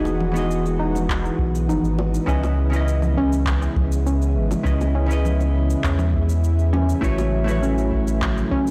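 A dark, clean hollow-body jazz guitar, a lush warbling pad and a soft, round pluck open together on Emaj7, setting a sunny, blissful sunset chillout groove at 101 BPM in a straight 4/4, tuned to A4 = 438 Hz. Within the first moments, layered electronic cabasa, congas and handclaps arrive with overdrive and studio reverb, joined by very quiet, low-tuned acoustic bongos that stop at 7.3 s. The guitar plays compressed accompaniment through digital delay and shimmer reverb, while the detuned, full-bodied pad holds sustained chords with chorus and the wave-folded pluck ripples through arpeggios with a tape-worn character. A deep sine sub bass sits up front with a mellow, sustained tone, and from 1.1 s an overdriven analog kick thumps in the background as though re-recorded in a large room. The harmony drifts from Emaj7 to C#m7 and settles on A6, and the whole excerpt, cut from a longer piece, has a blown-out, overdriven sheen with only light reverb.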